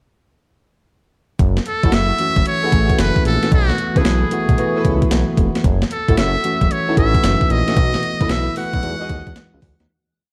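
A crisp 8-bit drum machine and a fat analog bass come in together at 1.4 s, setting up a confident, punchy new jack swing groove in F# dorian at 113 BPM with a hard 16th-note swing. The overdriven, sampler-style beat has a thumpy kick and a medium-tuned snare. The detuned sawtooth bass plays a bouncy synth-funk line with chromatic approach notes and a filter sweep. Up front, a trumpet with a metal mute carries the melody in buzzy, thin call phrases with light vibrato in a jazz style. A bell-like tine electric piano adds syncopated chord stabs with grace notes, while a bowed studio string section sits in the background with short syncopated stabs, vibrato and portamento. The chords move between F#m7 and B7sus4 before landing on Emaj9 in a dark production with concert hall reverb, and the verse fades out from 7.8 s to its close at 9.9 s.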